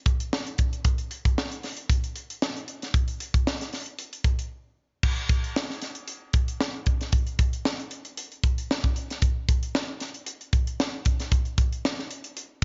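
Urban and upbeat, this pop groove at 115 BPM in 4/4 carries a light swing on the sixteenths and is performed by a single tight funk drum kit of crash cymbal, hi-hat, kick drum and snare drum, playing from 0.1 to 12.6 seconds. The acoustic kit sits up front and mid-forward in a small, nearly dry room, with a punchy kick, a high-tuned snare and a rolled-off top end. A brief break arrives at 4.5 seconds before the groove moves into a new section at 5.0 seconds, and the clip is cut from a longer piece.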